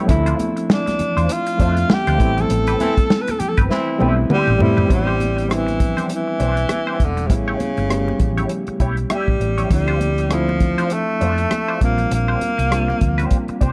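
A barky, reedy electric piano with light overdrive and fast tremolo opens this smooth, bittersweet 1970s-style soul excerpt in A minor at 100 BPM, alongside a clean, compressed semi-hollow guitar riff with wah. A round, punchy hollow-body bass, a dry, dark drum kit with a tight kick, and very quiet, bright congas join at once, and a breathy, intimate tenor saxophone carries the melody from 0.7 seconds. A smooth-topped horn section adds stabs between 2.8 and 4.2 seconds during a band accent and drum fill, before the tune moves on through lush chords under a dark, lightly reverberant production.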